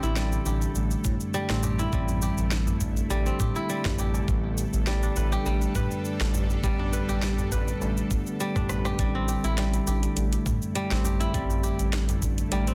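A relaxed 102 BPM groove in 4/4 with a light 16th-note swing anchors this warm, meditative organic downtempo excerpt in A minor, carried by a smooth, detuned synth bass up front, a gritty, thumpy electronic kick entering at 1.0 seconds, an afro-pop kit of sharp snare, metallic hats, rim click and shaker, and a very quiet, deep clay darbuka played with soft hands, with a brief drum fill at 8.5 seconds. Over this, a crisp, ringing fingerpicked kora spins arpeggios and a mellow tine electric piano comps, both trailed by tape echo, while a tense, string-like drone with vibrato sits in the background and pumps along with the piano. The harmony moves from Am7 to G/A and back, and the dense, heavily limited mix carries a light reverb.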